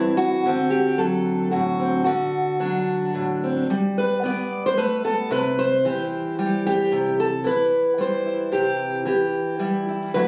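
A fingerpicked steel-string acoustic guitar opens this short folk excerpt alone, moving through D7, G and C in a pastoral 3/4 at 112 BPM with a straight feel. Its fresh strings ring bright and up front, and an occasional finger squeak comes through. Captured on a phone in a club-like room, the guitar carries a light reverb that gives the solo performance an intimate, lived-in character.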